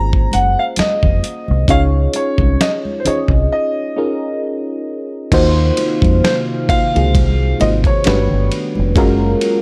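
Late-night and introspective, this short neo-soul and R&B cut settles into a slow, swung groove that feels unhurried and reflective. A boxy concert grand piano with long sustain carries the melody up front, its notes trailing into tape echo, while a soft, warbling FM electric piano with a vintage noise layer and chorus fills in the accompaniment beneath it. A deep, round dub bass sits punchy under a dusty, compressed sampler-style drum kit with a thumpy kick, medium-tuned snare, hi-hat, ride and crash, all gritty and up front as if re-recorded in a small room. Very quiet congas with a thick skin add soft hand-played colour. After a break from 3.5 to 5.3 seconds, a shimmering, retro pulse-width pad enters with slow-blooming sustained chords, and the harmony drifts from Bbm9 and Dbadd9 through Ebm69 to Gmaj7 and Gbmaj7, all wrapped in a digital ambience.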